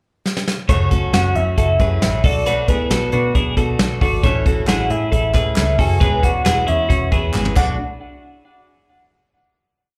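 A brisk, straight indie backbeat on a brushed drum kit, with a short fill at the start, sets this restless, wistful piece of jangly indie pop, heard live through a club PA with light reverb. A round, foam-muted electric bass pushes steady eighth notes under a full-bodied fingerpicked acoustic guitar in open chord shapes and a bright, twangy twelve-string electric guitar ringing out arpeggios doubled in thirds with spring reverb and slapback echo, while a soft octave-layered synth lead with chorus, vibrato and delay carries a motif-based melody from 1.1 seconds. Quiet, hollow group handclaps join at 4.7 seconds, and after another drum fill the band lands on a final hit at 7.8 seconds.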